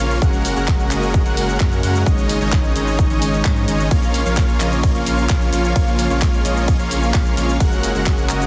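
A lush, warbling chorused pad, a huge detuned supersaw riff with tape echo and a deep saturated sub bass pump together from the opening of this anthemic, euphoric festival progressive house excerpt at 130 BPM in Bb minor, moving through Gbadd9, Absus4 and Bbm as a layered pop kit of handclaps, hi-hat, ride and shaker joins at 0.1 seconds and a punchy, overdriven electronic kick enters up front at 0.2 seconds, all within a dry, heavily compressed, radio-style mix.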